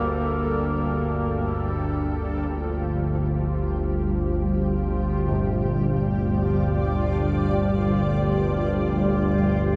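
Cloaked in a huge ambient reverb with a dark production, this ominous, vast dark ambient drone drifts in free time as an up-front analog drone of detuned, pulse-width-modulated sawtooth and ring-modulated tones anchors the low end with chorus. Above it, a bright, blurred granular cloud pad holds a Gmadd9 chord that thins to G5 at 2.5 seconds, while a bubbling stepped-filter texture of resonant, detuned sawtooth sputters through chorus and its own reverb. A distant, roomy duduk sings a brief folk-style phrase with vibrato and scooped notes until 1.9 seconds, and from 5.3 seconds, dry, close-miked bronze carillon bells ring arpeggios through delay in the background.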